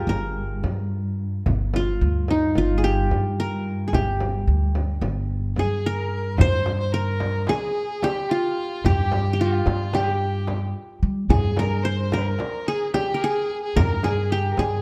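Lightly reverberant, this cut from a longer Turkish makam ensemble piece in G makam kurdi moves at 220 BPM in 9/8 with a longing, soulful air, as a bright-edged, plectrum-plucked qanun carries the melody up front over woody pizzicato upright bass and a deep frame drum, a dark bowed cello section holds a background drone until 6.5 seconds, a distant violin with vibrato adds a smooth second line from 5.6 seconds, and a crisp metal-shell darbuka joins at 6.4 seconds.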